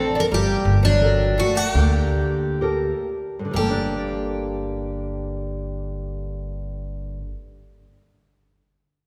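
Fado-style ballad, mournful and passionate, in a rubato 4/4 that drifts between 63 and 94 BPM and slows over the first 3.5 seconds, in G harmonic minor, cut from a longer piece. A bright, shimmering twelve-string guitar carries the picked melody up front while a second, softer parlour twelve-string traces a line in the background; a dark, fingerpicked nylon-string guitar accompanies, and a woody, growly pizzicato upright bass enters at 0.3 seconds on a Gmadd9 chord. The playing sits in a reverberant church or concert hall, whose long tail lends the ensemble a spacious, solemn glow.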